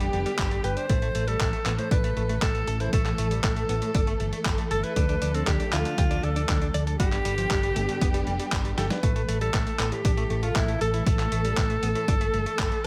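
A straight 4/4 italo disco groove at 118 BPM rides on a punchy, overdriven electronic kick that enters at 0.4 seconds, while a gritty, compressed sampler-style kit of handclaps, hi-hat and a medium-tuned snare adds dusty grit and a fill at 8.8 seconds beneath a round, dark hollow-body bass. Over chords moving through G, A5 and Dm, a bright alto saxophone sings a vibrato-laden pop melody with delay, as a clean, direct-recorded electric guitar plays arpeggios through digital delay and a lush, bowed symphonic string section holds soft-attack sustained chords in the background. Light reverb and digital ambience frame this danceable, nostalgic excerpt, cut from a longer piece.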